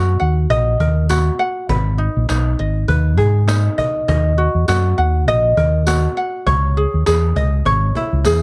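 Acoustic pop at 101 BPM with a light 16th-note swing, this wistful, tender excerpt pairs an up-front fingerpicked ukulele with a touch of plate reverb and a round, punchy fingered electric bass over a woody, distant cajon entering at 0.2 seconds and a jingly tambourine joining at 1.1 seconds, moving through D#m, G#m and C#madd9 in a dark, dry production.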